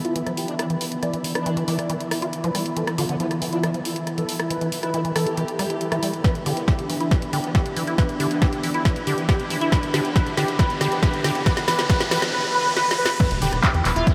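Psychedelic trance at 138 BPM in E minor, this intense, driving build-up is cut from a longer piece and sits in a dreamy mix soaked in huge ambient reverb. A thick, nasal unison lead with vibrato carries the melody over a squelchy, resonant liquid acid bass riff, while a bubbling stepped-filter texture holds mellow sustained chords and a warbly, nostalgic tape-like pad drifts in the background. All three of the lead, acid bass and texture go through filter sweeps across the build, and a very quiet formant-sweep wobble bass adds a wobbling second line. A drum and bass kit with a woody snare, bright hats, handclaps, rim clicks and crash plays throughout, joined at 6.2 s by a punchy, overdriven electronic kick up front as drum fills push the tension higher. A faint riser enters at 9.8 s and lands on an impact, with a dark, tight sequencer bass with a plucky filter snapping in at 13.3 s just as the passage breaks off.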